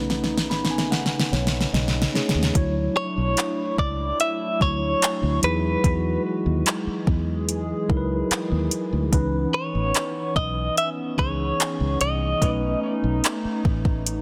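Dreamy and smooth, this contemporary R&B excerpt opens with a drum fill and a mellow tine electric piano fill before settling into lush ninth chords, carried by a round, foam-muted fingered bass and a hollow, flute-like pad with chorus. An up-front, overdriven electronic kit with a fat snare, metallic hats and handclaps sits forward in a dense, heavily limited mix with light digital reverb. At 3.0 seconds a clean, direct-recorded electric guitar enters with a picked melody treated with tremolo and tape echo, playing until 12.8 seconds.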